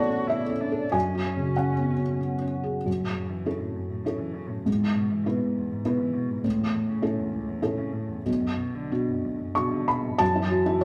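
A felt-muted upright piano, up front with thick felt and audible action noise, opens this fragile, reflective neoclassical piece in a rubato three, joined from the start by a dark, intimate bowed cello second line played sul tasto with light vibrato and by woody, round soft-mallet marimba arpeggios in the background that fall away at 2.8 seconds and return at 10.2 seconds, the trio heard playing together in one room with a wet large-studio reverb.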